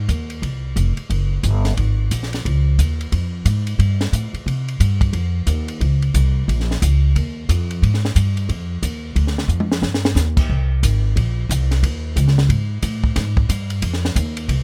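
A woody, up-front pizzicato upright bass on steel strings drives this playful, sophisticated swinging jazz excerpt in Ab major at 179 BPM, joined at 0.1 seconds by a dry compact cocktail drum kit with dark cymbals, a high-tuned snare and a punchy kick, whose fill at 9.5 seconds leads into a new section at 10.5 seconds, all captured close and detailed in a nearly reverb-free room.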